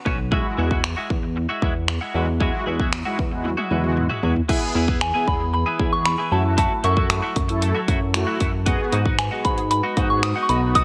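A straight 4/4 pulse at 115 BPM drives this energetic dance-pop excerpt, with a punchy, layered electronic drum kit of kick, hi-hat, toms, finger snaps and crash cymbal sitting up front, and a drum fill from 3.4 to 4.5 seconds. A glossy, retro chorused synth bass pumps against the sidechain alongside a clean, twangy twelve-string electric guitar riff. Mellow synth brass, brassy and detuned with vibrato, adds pumping accompaniment over chords that move from Eadd9 to E, F#m7 and G#m7. At 4.5 seconds a smooth analog pad slips in behind with sustained chords, and at 5.0 seconds a soft, pure FM synth bell carries the melody high above, colored by chorus and phaser. A barely audible noise sweep appears at the very end, and light digital reverb gives the driving mix a touch of space.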